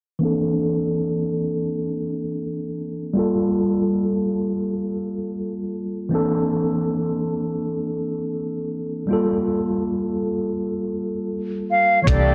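A mellow tine electric piano opens this hazy, melancholic lo-fi hip hop excerpt at 81 BPM in G dorian, playing clean accompaniment chords that move between C13 and Gm9 beneath a low-pass filter and a filter sweep that runs until 12.1 s. Up front and rounded by its built-in speakers, the keys carry the piece alone for most of its twelve seconds, with a swung sixteenth-note feel in 4/4. At 11.7 s a concert flute slips in with a pure, straight-toned, tongued melody, also filtered and placed close. Just after, at 12.1 s, a dark, woody studio string section adds soft-attack bowed chords with light vibrato, while a foam-muted fingered electric bass sounds a round, punchy C2. A gritty, compressed sampler-style drum kit arrives in the same moment with a thumpy kick and hi-hat. The whole mix is soaked in a lush hall reverb with a cassette-tape haze, giving it a dreamy, faded character.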